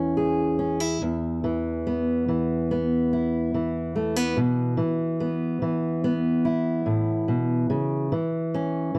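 A fingerpicked steel-string acoustic guitar opens alone on an E6 chord, setting a nostalgic folk mood at 72 BPM in 4/4 with a straight feel. The guitar sits up front with a dark auditorium tone, ranging from a low E2 to G#4 in E major, tuned slightly below standard pitch. After the first second it settles onto E5, moving to Bsus4 at 4.4 seconds and then to C#m at 7.7 seconds. Light reverb and a dark, warm production give the solo performance a warm, nostalgic character. This brief 9-second excerpt is taken from a longer piece.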